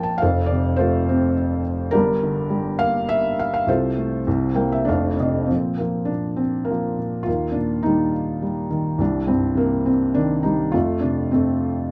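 Hopeful and sunny, this lyrical classical solo piano passage, cut from a longer piece, drifts in a rubato 3/4 on an intimate, felt-muted upright piano whose mellow tone and audible action noise sit up front in a dark production with light reverb, with a brief fill from 4.3 to 5.5 seconds leading into a new section where the harmony moves through Bb, Eb and Cm before settling back on F.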